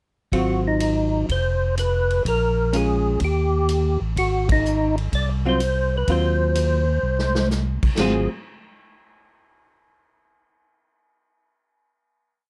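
Swinging and soulful, this short soul jazz organ trio piece in Ab mixolydian moves at 126 BPM with swung 8th notes. A percussive tonewheel organ with key click and third harmonic percussion states a motif-based melody of call phrases through chorus vibrato and a slow rotary speaker. A dark, hollow-body archtop guitar comps syncopated three- and four-note chord shapes, and a fat, up-front tonewheel organ carries a two-feel bass line. A big-room acoustic drum kit with a boomy kick and a stick ride pattern keeps time, and it adds a fill near 7.0 seconds after the band hits an accent at 4.4 seconds. A final chord then rings out to 9.9 seconds in a light reverb.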